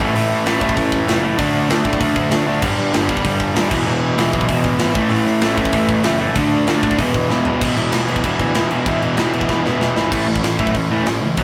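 A driving, straight 4/4 pulse at 192 BPM propels this rebellious, upbeat punk rock excerpt, with a tight metal drum kit up front, its bright cymbals, medium-tuned snare and tight kick ringing in an airy big room, and drum fills at 7.3 and 9.5 seconds pushing into new sections. A crunchy overdriven guitar riffs up front over a background of a hollow-bodied semi-hollow guitar, a double-tracked sludgy distorted guitar and a growly, fuzz-laden picked bass, all running through chords of A, D, G and E before landing back on A at 10.1 seconds. Light reverb and tube saturation give the whole a rough rehearsal-room feel.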